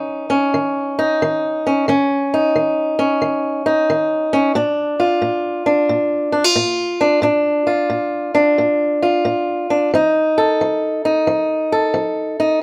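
A lone fingerpicked acoustic guitar opens this swaggering, soulful blues fragment, cut from a longer piece and running just 12.6 seconds. It moves at 89 BPM in 4/4 with a swung eighth-note feel, tuned to A4 = 441 Hz and ranging from Bb2 up to A4. The guitar sits up front with a warm, boxy tone, and finger squeaks on the strings add a close, human texture. The harmony travels from Dbsus2 over Eb to Bb at 4.6 seconds, then to F7 at 9.9 seconds. Light reverb and a live, in-the-room sound give the performance an easy, intimate presence.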